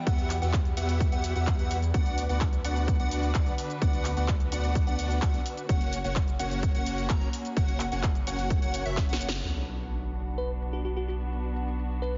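An overdriven, punchy electronic kick sits up front in this anthemic, emotional festival progressive house excerpt at 128 BPM in B harmonic minor, driving a drop with a huge detuned supersaw riff, a catchy square-wave lead playing arpeggios, a deep saturated sub bass, a big-room kit of snare, claps, hi-hat and shaker, and intimate bowed chamber strings in the background, all pumping except the drums, until a drum fill from 9.0 seconds and a band accent at 9.3 seconds give way to a very quiet sub drop, a filter sweep on the strings and a sparkling bell-like FM electric piano melody entering at 10.4 seconds, all heard through light reverb and a heavily compressed, radio-like sound.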